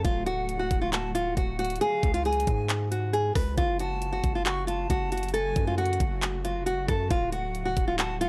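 A half-time trap groove at 136 BPM drives this hard-hitting, eerie hip hop excerpt in F# harmonic minor, with a knocking kick, bright hi-hats, handclaps and rim clicks from an electronic drum kit sitting up front. Beneath it, a long sustained 808-style bass delivers deep, sine-toned notes with a fast attack that decay. A fingerpicked nylon-string guitar carries the melody, its classical tone warm and up front, complete with audible finger squeaks. In the background, a bright silver concert flute plays an airy, expressive second line with vibrato and a soft attack, trailed by analog delay, while a granular cloud pad holds blurred, warbling chords that evolve in its own reverb. The chords move from D to C# at 1.8 seconds and F#m at 3.6 seconds before returning to D, all captured in a dry, gritty hardware sound with a digital ambience.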